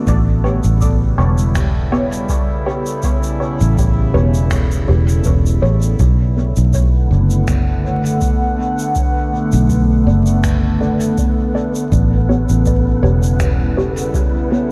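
Spacious and deep, this ambient dub excerpt at 81 BPM sets a warbling, nostalgic tape-like pad with chorus, reverb and phaser over a round, foam-muted fingered bass and a deep analog kick, with dark brushed shaker and finger snaps trailing dub echo, muted, phased chord stabs echoing through A9 and Bm7, and an airy, wind-like noise texture entering at 6.3 s in the background, all under a haze of vinyl crackle in a small, lightly reverberant room.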